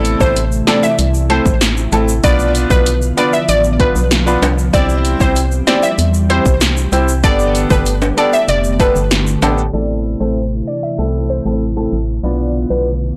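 An overdriven deep house drum kit drives this tough, hypnotic dancehall fragment, its deep kick, punchy snare and metallic hats sounding layered and re-recorded in a large room before the kit drops out at 9.6 seconds. Beneath it, a hollow, organ-like FM bass sits up front with fast-attack, decaying notes, while a clear baby grand piano with long sustain plays accompaniment, pumping against the sidechain. A crystalline wavetable pluck carries the melody, detuned and doubled with a sub octave, with a filter sweep, chorus and digital delay. An ethereal, warbling vintage FM pad holds slow-attack chords in the background through ensemble chorus and its own reverb, and soft-handed egg shaker and ringing timbales add small-room acoustic color until 9.7 seconds. The harmony cycles through Am, Bdim, C and Gadd9. The whole mix is blown-out and overdriven, darkened by a low-pass filter under light reverb, and the passage ends at 13.2 seconds as a cut from a longer piece.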